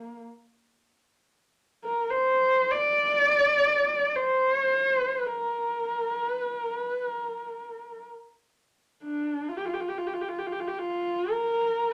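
A lone horsehead fiddle carries this short Mongolian folk passage, its husky, warm bowed horsehair strings sitting up front with expressive vibrato and gliding portamento as it ranges from Bb3 to D5. Played in free time in a Bb gong mode, the traditional melody feels proud and galloping across its 11.9 seconds. A wet studio reverb with a short 0.6-second decay gives the single player a sense of space, and the passage sounds cut from a longer piece.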